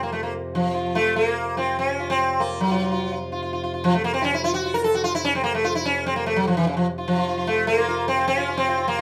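A straight 4/4 pulse speeds up across this brief, serene and radiant Hindustani classical excerpt, cut from a longer piece. Up front, the acoustic sitar carries the melody from Db3 to Bb4, its bright, buzzing plucked tone ringing with shimmering sympathetic strings. Beneath it, a pedal harmonium holds a low, reedy drone between F2 and C3, mellow and breathing, sitting well back in the balance. At 2.6 seconds the music moves into a new section that runs to the end at 9.0 seconds. The pair sound as if playing live together in one room, wrapped in a wet studio reverb.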